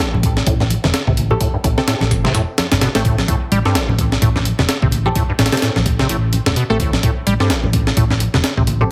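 Breakbeat with an energetic, swaggering feel at 128 BPM in A minor, swung on the sixteenths over a single Am7 chord, in a short section cut from a longer piece. Gritty, compressed sampler-style breakbeat drums sit up front with a thumpy kick, high-tuned snare and hi-hat in studio reverb, while a rubbery, resonant square-wave acid bass riff with filter sweep and tape echo is joined by a round, amped hollow-body fingered electric bass with tube saturation and very quiet, ringing low-tuned congas. From 1.3 seconds a muted, detuned sawtooth dub chord stab with phaser and tape echo plucks mellowly in the background, and the whole mix has light reverb and a heavily compressed radio sound.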